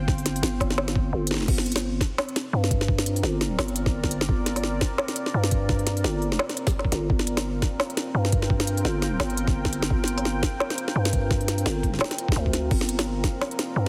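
A growling, buzzy 808-style bass sits up front in this heavy, dark half-time drum and bass excerpt, joined by an overdriven, thumpy, pitched-down electronic kick that drops out from 1.1 to 1.5 seconds, an electronic kit with crisp hi-hats, a woody snare and crash cymbal, and a deep, detuned sawtooth pad carrying chorus, reverb, 12-bit sampler grit and sidechain pumping, set in light digital ambience with a heavily compressed, radio-like sound.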